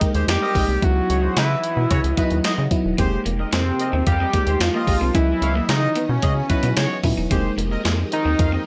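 The rubbery square bass sits up front with a hollow, bouncy filter pluck, anchoring this slick, late-night slice of early-eighties boogie funk at 111 BPM in a straight 4/4. Beside it, a clean 12-bit digital drum machine punches through with a thumpy kick, medium-tuned snare, hi-hat and handclaps, its tape-tinged sampler sound bathed in gated reverb. A fat analog lead carries the melody from 0.3 seconds with warbling vibrato, tape echo and chorus, while a clear horn section adds a tight, smooth-topped second line. An FM electric piano with a soft pad layer provides lush, dreamy accompaniment through chorus, and a very quiet phased string machine swirls underneath with sustained chords. From 3.0 seconds an electric guitar at the edge of break-up slips in with a compressed, picked riff in the background, washed in lush chorus, as the harmony moves between Fm11 and Dbm11 in this excerpt from a longer piece.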